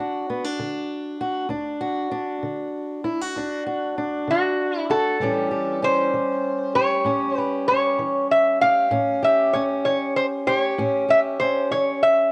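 Acoustic country blues in 12/8, this soulful, laid-back excerpt moves at an unhurried 64 BPM in D major, with a straight feel. A fingerpicked steel-string acoustic guitar opens alone, laying down the accompaniment with a warm, concert-style tone where finger squeaks catch the ear. At 4.3 seconds a lap resonator guitar enters up front with the melody, its metallic, nasal slide voice played with fingerpicks and sitting above the accompaniment. The harmony rests on D before shifting to A7 at 5.2 seconds, and the passage stays within a single section until it is cut off at 12.3 seconds. Both guitars carry the soft grain of a home cassette recording, bathed in a moderate spring reverb that lends a lingering, roomy glow.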